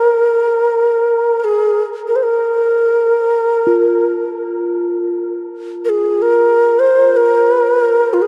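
A breathy, hollow wooden flute in the Native American style opens this haunting, meditative world piece in free time, singing an F minor pentatonic melody up front with vibrato, soft attacks and a diffuse ambient delay trailing its phrases. At 3.7 seconds a bronze singing bowl joins on a single metallic, ringing tone sounded with a suede striker, its slow beating shimmering beneath the flute. A huge, wet reverb with a long tail surrounds the scene, and both parts sound until the cut at 8.3 seconds.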